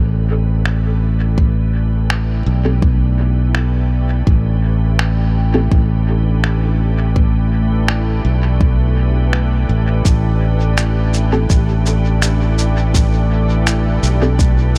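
A straight 4/4 groove at 83 BPM drives this hazy, deep ambient dub fragment in A minor, cut from a longer piece and resting on a single Am7 chord. Muffled, compressed finger snaps and cabasa with a sampler-style character enter at 0.7 s, trailing dub echo, and a layered, produced electronic kick follows at 1.4 s. Up front, a modern fingered electric bass sits low and growly, its bright, direct tone holding the bottom of the mix. A calm, organ-like pad of detuned sine tones fades in beneath everything, its slow attack and long release softened by ensemble chorus and its own built-in reverb. A filtered sawtooth and pulse-wave chord stab with a wave-folded, plucky edge appears at 2.7 s and returns at 11.3 s, muted yet bright, carrying phaser and dub echo through a filter sweep. The room itself is dry and close, giving the whole track a tight, present sound.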